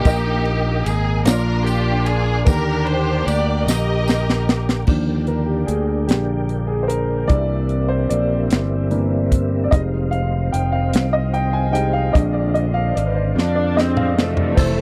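A slow 6/8 gospel sway at 50 BPM, with a dry, polished drum kit (high-tuned snare, tight kick, drum fills) and up-front, amped fingered electric bass driving the feel, while a jingly tambourine sits in the background for the opening. Lush strings carry the soulful, jubilant melody in Eb major over woody upright piano and a flute-like tonewheel organ swirling through fast rotary speaker and chorus vibrato. At 4.9 seconds the piano takes a solo as a very quiet, dark French horn section holds sustained chords beneath it, and the strings return at 13.4 seconds in this close, 1970s-style studio sound.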